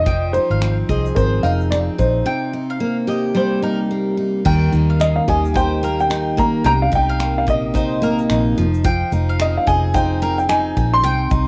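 Lightly reverberant and home-recorded on cassette, this wistful, reflective acoustic pop excerpt swings gently in 4/4, with a worn, slightly detuned upright piano carrying the melody through cassette tape and analog delay. Up front beside it, a bright dreadnought steel-string guitar is picked with audible finger squeak, while a foam-muted electric bass adds a dark, round low end and a bowl-back mandolin spins quieter arpeggios on its double strings. A small-room country kit with punchy kick, crash cymbal, finger snaps and shaker moves over Fm7 and Cm7, through a break at 2.3 seconds, and into a new section on Ebadd9 at 4.5 seconds.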